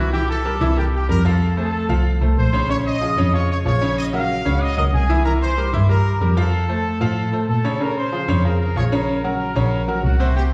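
Heard from further back in a resonant recital hall, this short cut from a longer salsa piece has a driving, fiery energy, cycling through C7, F, Bbm7 and Gb6/Bb. A tight, punchy trumpet section carries the clear melody with light vibrato, while a brilliant, slightly worn concert grand sits up front in accompaniment, its deep bass and audible action noise lending an intimate feel. Beneath them, a single bowed double bass, dark and expressive, sings with vibrato and portamento, standing forward in the mix.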